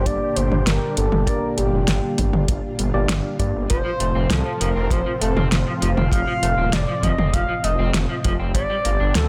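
Opening on a smooth, mellow sawtooth synth lead carrying the melody over a silky, chorused string pad with sidechain pumping, a thick detuned saw bass up front and worn, slightly out-of-tune tine electric piano stabs, this moody, nocturnal synthwave passage adds a punchy kick drum and a pop drum kit with a fat snare and metallic hats at 0.1 seconds, and the piano gives way at 3.7 seconds to a slightly broken-up, picked electric guitar riff through a small old amp.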